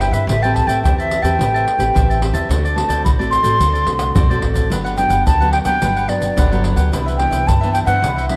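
Bathed in a moderate echo-chamber reverb, this sunny, playful samba-and-choro excerpt at 109 BPM in G major sets an airy, vibrato-touched wooden flute up front over crisp picked cavaquinho, full-bodied fingerpicked nylon-string guitar with audible finger squeak, woody, dark pizzicato upright bass, and soft-handed pandeiro, tube shaker, tight surdo and tamborim, with a drum fill at 4.0 seconds as the harmony moves through Am9, D7, Gmaj7 and Cmaj9.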